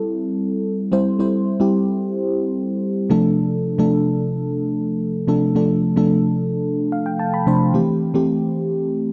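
A lightly reverberant, up-front sound carries this glossy, uplifting pop fragment, cut from a longer piece and played entirely by a mellow FM electric piano. The piano's round, full-bodied tone is dark and soft, with a fast attack, a noise layer and decaying notes colored by chorus and phaser, moving from C6 through Dm/C. A short piano fill arrives at 6.6 seconds before the harmony settles back on C6 at 7.7 seconds.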